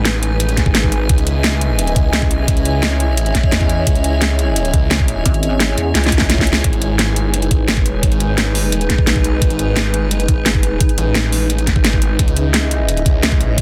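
A snarling, growling distorted saw bass sits up front through this dark, aggressive slice of technical drum and bass, alongside a dubstep kit with a huge snare and metallic hats and an electronic kick with a knocking, tape-warm punch that enters at 0.6 seconds. A moody analog pad holds sustained minor chords with subtle chorus and sidechain pumping, while a granular cloud pad adds a blurred, evolving, bright shimmer in its own reverb. A pulsing, saturated wobble bass appears briefly from 5.3 to 6.6 seconds around a drum fill, all in a dense, heavily limited modern mix with light digital ambience.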